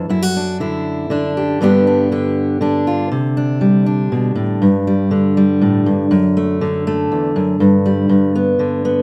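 A fingerpicked steel-string acoustic guitar, bright and up front with the crisp ring of fresh strings, plays alone in this pastoral, nostalgic folk excerpt at 120 BPM in 3/4 and C major, moving from D/F# and G through Csus2 and G5 under light reverb before a new section begins at 3.1 seconds.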